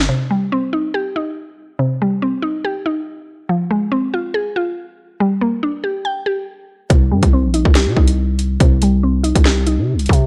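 A dry, gritty recording with digital ambience opens on a woody, detuned mallet-like synth pluck with chorus, carrying a tense, menacing half-time drill groove at 141 BPM in C minor over Cm, Fm and Gm, until at 6.9 seconds a filter sweep takes the pluck as a growling, buzzy 808-style bass, heard only for a split second at the very start, returns and an up-front drum kit with a hard-clipped kick, sharp snare, metallic hats and vintage 12-bit sampler character arrives.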